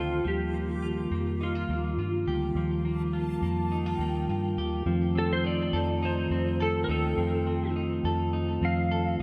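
Dream pop, blissful and reverb-soaked, sets a clean lap steel melody played with fingerpicks and volume swells over a flute-like organ's sustained chords through a fast rotary speaker, picked hollow-body guitar arpeggios, a round, punchy foam-muted bass up front and a reversed, detuned granular texture glinting up high, all washed in a long plate reverb around an Ebadd9 chord at 0.3 seconds in this 9.2-second cut from a longer piece.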